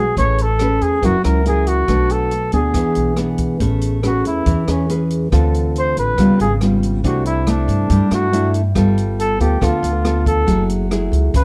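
Bossa nova at 140 BPM in A major, sophisticated and sunny, with a thumb-plucked, classical nylon-string guitar up front and a woody pizzicato upright bass beneath a warm flugelhorn whose light vibrato and scooped notes sound distant and roomy as it moves into a solo at 3.6 s, while an open jazz drum kit with a boomy kick, hi-hat and rim click enters at 0.2 s in a small, natural room, framed by a dark production with light reverb.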